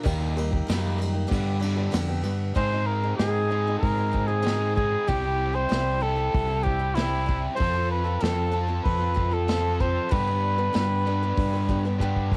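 A straight 4/4 pulse at 95 BPM comes from a soft brush drum kit with dark cymbals and a punchy kick, joined by a round, up-front fingered electric bass, in this hopeful folk rock and heartland rock excerpt. A boxy, picked swing-style acoustic guitar and a biting, double-tracked overdriven guitar riff carry a cassette-tape grain, and at 2.6 seconds a mellow cor anglais with light vibrato enters to play a classical-style solo melody over chords moving from Ab to C, F and G. A drum fill arrives at 12.0 seconds, and light reverb gives the piece a homespun, home-recorded feel.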